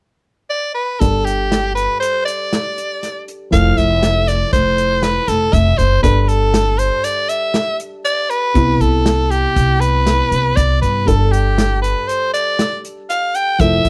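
A raspy, gritty soprano saxophone opens this excerpt alone at 0.5 s, leading an intricate, driving progressive instrumental in 5/4 with edgy vibrato and scooped notes, sitting up front. At 1.0 s a dark, mellow grand piano with audible action noise, a woody pizzicato upright bass and a distant, roomy soul drum kit with a tight kick and rolled-off top all enter together. Beneath the solo, the harmony keeps returning to Gsus2 between Fmaj7 and Cmaj7, with light reverb around the band.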